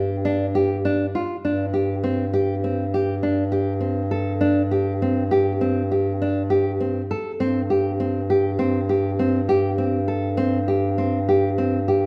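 Restless and shimmering, this contemporary chamber piece in 5/4 at 101 BPM sets a thumb-plucked nylon-string guitar with fresh, warm strings playing arpeggios over a warm, roomy bass clarinet providing the bass line. It moves from G5 to Gsus4 at 1.4 seconds within a moderate scoring-stage reverb, in a short passage cut from a longer work.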